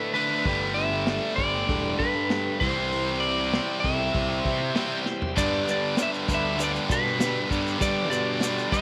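A small-room sound frames this short, sunny, swaggering classic rock cut in G major, moving at 98 BPM in a straight 4/4. A slightly broken-up, compressed lead guitar carries the melody with slapback echo, riding over two rhythm guitars: a tight, distorted one up front and a crunchy overdriven one set back in spring reverb, both playing riffs. A vintage acoustic kit with dark cymbals and a punchy kick comes in at 0.1 seconds, joined at 0.5 seconds by a growly fuzz bass and a reedy electric piano shimmering with fast tremolo in the background. A shouting tonewheel organ with key click and slow rotary speaker holds very quiet sustained chords underneath. The harmony moves from Gsus2 to C, and a drum fill leads into a new section at 5.4 seconds, where the chord settles on G and a grainy egg shaker joins in.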